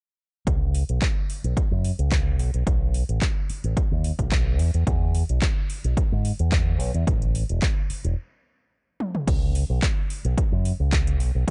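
Cosmic and groovy, this nu-disco excerpt rides a straight 4/4 pulse at 109 BPM. A fingered electric bass with an envelope filter sits up front, bright and direct with an amped edge, ranging from E1 to G#2 and pumping under sidechain compression. Beside it, a punchy electronic kick, layered and overdriven, hits hard at the front of the mix, while a house drum kit of crash cymbal, handclaps, metallic hi-hats and toms sits lower, its overdriven layers carrying the ambience of a large room. The groove halts for a stop from 8.2 to 9.3 seconds, a drum fill arrives at 9.0 seconds, and a new section follows until 11.5 seconds. The production is dark and dry, with little reverb and a rounded top end.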